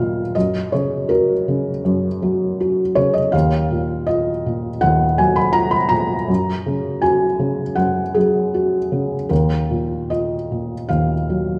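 Bathed in a lingering recital-hall reverb, this intimate, wistful neoclassical minimalist excerpt features a solo felt-muted upright piano, up front and dark with thick felt, short sustain and audible action noise, drifting in free rubato between Gb and Ebmadd9 chords across its 11.6 seconds.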